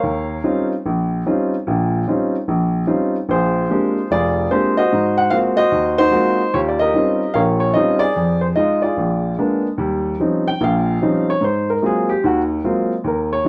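An open, up-front baby grand piano with a warm tone carries this relaxed, swinging solo jazz piece at 148 BPM in Eb mixolydian, tuned to A4 = 437 Hz, spanning F1 to G5 over lush chords such as Eb13, Bb13, Ab13 and a Bb7b9 turnaround before a solo passage from 9.8 seconds, all heard in a short cut from a longer performance captured live in one room with light reverb.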